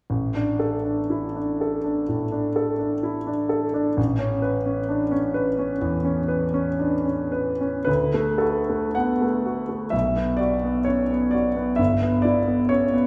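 A wet recital-hall reverb, with a decay of about 1.4 seconds, surrounds this short cut from a longer romantic nocturne, and the room is heard from further back even as the piano itself sits up front. The concert grand sounds warm, intimate and natural, with deep bass and the mechanical noise of its action clearly audible. In D major at 62 BPM in 4/4, the tender, dreamy music moves with uneven beats and free rubato, ranging from G1 up to F#5. The opening passage rests on D5 over A before drifting to an Aadd9 at 4.0 seconds. A contrasting second section begins at 7.9 seconds on a plain D chord, then passes through B5 and Em/G before the cut ends at 13.1 seconds.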